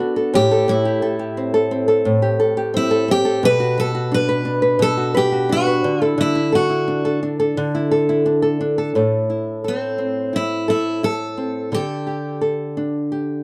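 A picked steel-string acoustic guitar carries the melody, its auditorium-size body and audible finger squeak sitting up front in this heartfelt, sunny pop piece at 87 BPM in 4/4 with a straight feel. Beneath it, a small-bodied nylon-string guitar fingerpicks the accompaniment, warm and close, spanning from A2 up to B4 while the melody stays between C4 and B4. The harmony moves through Am7, Bm7 and Dadd9, then shifts at 9.0 s into a new passage built on Am and Dsus4. The steel-string melody drops out at 12.4 s, leaving the nylon-string guitar alone until the fragment cuts off at 13.4 s. The dry, intimate sound, with little reverb, recalls a 1970s studio session.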